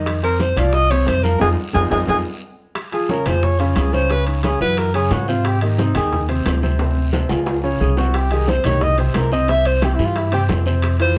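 Afro-Cuban jazz at a driving 178 BPM in F minor, this sultry excerpt puts a breathy alto saxophone up front, its subtone and vibrato sounding distant and roomy as it solos across the whole clip over a woody pizzicato upright bass and a clear, intimate baby grand piano with audible action noise and long sustain. Congas with a bright, thin skin, ringing metal-shell timbales, tight high-tuned bongos and a raspy, close guiro fill out the percussion, with a band accent at 1.4 seconds and drum fills around 1.7 and 6.8 seconds. Chords move from Fm7 through Dbmaj7, Gbsus2 and Dm7b5 before settling on C, all in a dark production with light reverb.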